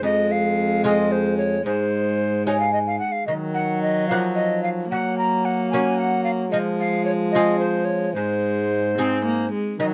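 A small consort opens together at once: a hollow tenor recorder carries the melody over lute, viola and trombone in a solemn, courtly renaissance-style dance. The tempo sits at 74 dotted-quarter beats per minute in a straight 6/8, and the harmony moves through Fm, Ab, Ebm and Gb before returning to Fm and Ab. The recorder sounds airy and woody, with a tongued chiff at the start of its notes, and it sits up front in the close, detailed sound. Beneath it, a single bowed viola brings a reedy gut-string tone with light vibrato in period style, while the fingerpicked lute adds a delicate, double-strung accompaniment with some octave-doubled strings. A clear, present trombone holds the bass line in classical style. Light reverb surrounds the ensemble through this brief passage of just under 10 seconds, cut from a longer piece.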